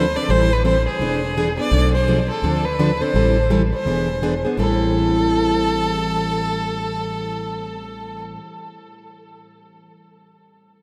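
Drenched in a huge ambient reverb, this short cut from a longer piece sounds as if played in a vast, echoing space. It is bittersweet, swinging jazz manouche in A minor at 168 BPM, tuned to A4 = 444 Hz, with a clear, smooth bowed violin carrying the melody with vibrato up front. Beside it, a boxy picked steel-string acoustic guitar gives the chordal accompaniment, and a woody, thumpy pizzicato upright bass on gut strings anchors the low end.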